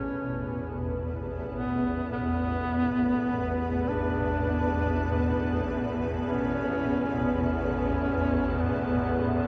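Soaked in a long cathedral reverb, this short cut from a dark ambient drone piece sounds as if it hangs in a vast, echoing space, unsettling and desolate at a slow 51 BPM over a held Asus2 in A major. Up front, a solo duduk sings a folk-style melody with vibrato and scooped notes through tape echo, set over a bright, swarming, detuned drone and a cloudy, full-bodied granular pad, both evolving through their own reverb. An eerie, inharmonic FM bell plays barely audible arpeggios, and from 0.6 s a very quiet, grainy texture flickers in.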